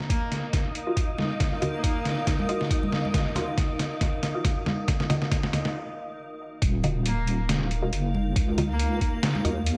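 A blurred granular cloud pad holds an Ebmadd9 chord over muffled, overdriven sampler-style hi-hat and snare in this dark, heavy deep dubstep fragment in Eb minor at 138 BPM with a swung half-time feel, as a thumpy pitched-down kick, a distant bowed cello with vibrato and dub echo, a breathy wind-like noise texture, a muted, phased dub chord stab and bright, close congas fill out the build-up until a short break at 5.8 seconds gives way at 6.6 seconds to a drop carried by a deep, detuned wobble bass up front.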